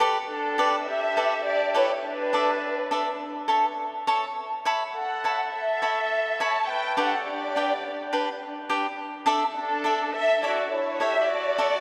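A dark, lush violin section carries the passionate melody up front, its bowed lines full of vibrato and portamento. A crisp, bright cavaquinho picks out the accompaniment from the very start, while a clear trumpet plays a classical-style second line that sounds distant and roomy. The lightly swung mariachi piece drifts through suspended and added-note chords between G and A, its drama heightened by the long, wet reverb of a church or concert hall before the cut ends at 11.8 seconds.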